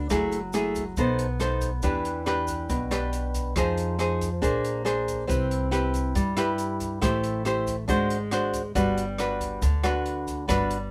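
Bossa nova in G major at 139 BPM, this sunny, breezy excerpt is cut from a longer piece and runs just under 11 seconds in a straight 4/4. A fingerpicked nylon-string guitar sits up front with a classical touch, carrying the accompaniment through a progression that moves from F#m9 and B7b9 through Fm7, Bb9 and Cmaj7 before settling on Gmaj7 at 8.8 seconds. Beneath it, a pizzicato upright bass with steel strings adds a woody low end. An open jazz drum kit, airy and polished in a small room, plays hi-hat, rim click and a boomy kick. A grainy, bright tube shaker sits close but in the background, and light reverb gives the whole a gentle sheen.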